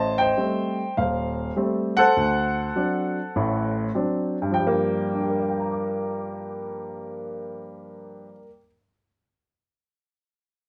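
Heard through a moderate studio reverb, a natural, up-front baby grand piano plays moody, late-night solo jazz in G minor at a swung 101 BPM in 4/4, ranging from Eb1 to D6 as the harmony moves from Am7b5 to D7 and arrives on Gm7 at 4.5 seconds, in a brief 8.7-second passage cut from a longer piece.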